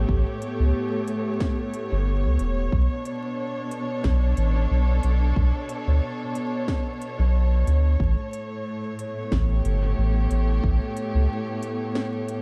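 Deep and meditative, this ambient dub fragment, cut from a longer piece, puts a dark chamber string ensemble's smooth, vibrato-laden bowed chords up front over a round, soft sub bass that stops at 11.3 seconds. A layered electronic kick sits in the background with small room ambience, while a quieter electronic kit adds a woody snare and crisp hi-hats, overdriven and trailing dub echo. The harmony moves from A9 to Bm9 at 2.7 seconds and returns to A9 at 8.0 seconds, framed by a digital ambience with vinyl crackle and a dark, warm production.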